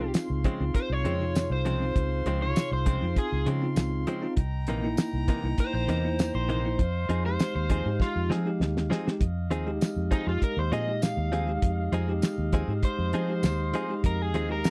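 A crunchy overdriven guitar carries the melody through this brooding, soulful straight-eighth soul blues excerpt in F minor at 99 BPM, taking a solo from 9.2 seconds after a drum fill at 8.0 seconds. Underneath, a cloth-damped drum kit with a fat snare, tight kick and tambourine sits up front beside a round, foam-muted fingered bass, while a direct-recorded clean guitar adds compressed stabs and a bell-like tine electric piano fills in accompaniment. A bright, close-miked horn section holds sustained chords over a progression moving from Dbmaj7 through C7#9 to Fm7, all captured in a dry, close 1970s-style studio sound.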